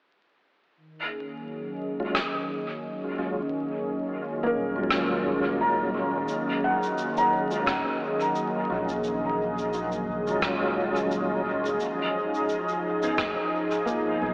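A 4/4 groove with a light sixteenth-note swing from acoustic rim click and shaker, trailed by dub echo, carries this meditative, hazy ambient dub excerpt. A smooth, detuned sawtooth pad holds sustained chords up front, and a clear tonewheel organ adds stabs with audible key click through chorus vibrato, a slow rotary speaker, a low-pass filter and dub echo. A felt-muted upright piano enters at 4.4 s with mellow, boxy arpeggios, audible action noise and dub echo, joined by a deep, round sub bass, while a muffled, overdriven kick thumps in the background from 7.7 s, all inside a vast, long-decaying reverb with vinyl crackle and an AM radio tone, and the harmony changes chord at 11.8 s.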